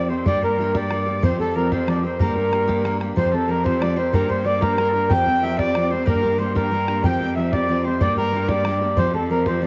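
A home cassette recording with moderate spring reverb and a dulled top end carries this spirited, wild Celtic jig in 6/8, cut from a longer piece. An up-front, reedy accordion with slow beating leads the melody through tape and analog delay, while a breathy, bright metal flute with vibrato plays a quieter second line. A fingerpicked jumbo steel-string guitar adds full-bodied accompaniment, a rich bowed cello holds the bass with smooth vibrato, and a boomy, open bodhran enters at 0.3 seconds as two chords alternate throughout.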